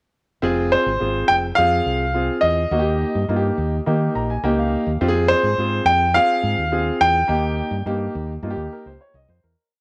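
This is an uptempo 1960s-style soul piece, a short, driving and passionate verse that cycles between F minor and E-flat major chords. A concert grand piano with a natural tone and deep bass anchors the accompaniment, striking close-voiced chords on every quarter note and decorating them with grace notes and brief fills, including one at 3.9 seconds. Underneath, a fingered electric bass sits up front with a dark, round sound, playing a melodic, syncopated soul line colored by chromatic approach notes. From 0.7 seconds a baby grand piano carries the tune in its high register, building a motif-based melody from hook phrases with a brilliant, intimate character, long sustain and audible action noise. Light reverb gives the recording a small-room ambience, and a fade-out begins at 7.3 seconds.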